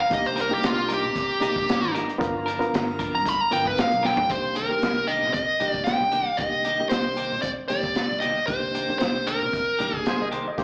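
A straight-eighth soul blues groove in 4/4 rides on a crunchy breakbeat kit with a punchy kick and rolled-off top, a round, foam-muted fingered bass and a reedy, worn electric piano with tremolo, setting a brooding, smoky mood over Cm9 and G7#9. A dark, overdriven lead guitar sits up front with slapback echo and takes a solo until 4.3 seconds, while a distant, bright horn section holds sustained chords and a compressed, scooped clean guitar adds spring-reverbed stabs in the background. After a drum fill at 4.0 seconds the lead carries on, and a woody upright piano slips in at 10.1 seconds with analog delay, all heard as a live club set through the venue's PA with a small-speaker sound.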